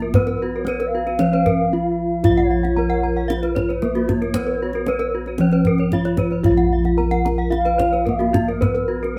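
A light reverb surrounds this short cut from a longer Balinese gamelan piece, played live by the ensemble in one room, with the bronze metallophones captured close and dry. At 114 BPM in a straight 4/4 in Bb pelog, the mood is shimmering and hypnotic. One metallophone, struck with a wooden mallet, carries the melody with a full, ringing tone, while two brighter metallophones played with horn mallets spin arpeggios above it; the second of these enters at 0.3 s. Their paired tuning produces beating shimmer. Underneath, the bossed gongs sit up front as the bass, round, mellow and soft from padded beaters, with a vintage, band-limited colour, as a deep, acoustic kendang handles the percussion. From 0.6 s a distant, reedy bansuri adds a second line, pure and bamboo-toned with vibrato and a crisp attack.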